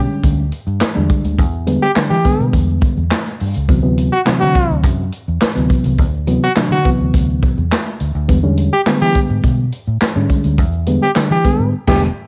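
Strutting and funky, this short funk cut from a longer piece sets clean, reedy electric piano stabs over E7#9 and D13 chords, a dark, round, foam-muted fingered bass, and a natural-sounding big-band drum kit with a punchy kick, snare, hi-hat, crash and handclaps, while a grainy egg shaker sits in the background, a brilliant trombone with light vibrato carries the second line from 1.8 seconds, and the band hits an accent at 11.7 seconds, all captured in a small-room home cassette recording with dulled highs.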